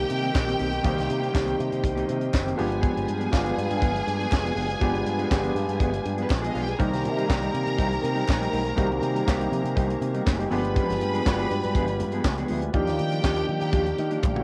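Strings, piano, organ and bass open this joyful, danceable disco passage together, cut from a longer piece. A clear, lush symphonic string section carries a bowed second line with vibrato and a touch of analog delay, while a concert grand piano with audible action noise and long sustain plays an intimate accompaniment. A soft, flute-like tonewheel organ holds sustained chords in the background through a slow rotary speaker, and a picked electric bass runs bright and direct through an envelope filter. Almost at once a tight funk drum kit arrives up front, dry with a high-tuned snare and tight kick, joined by a dark, clean fingered electric guitar and a hollow group handclap tucked behind the mix. Distant, very quiet congas enter at 6.8 seconds, and the harmony cycles between Cm7 and G7b9 before settling on Ebmaj9, with a drum fill at 14.2 seconds closing this cassette-flavoured home recording in light reverb.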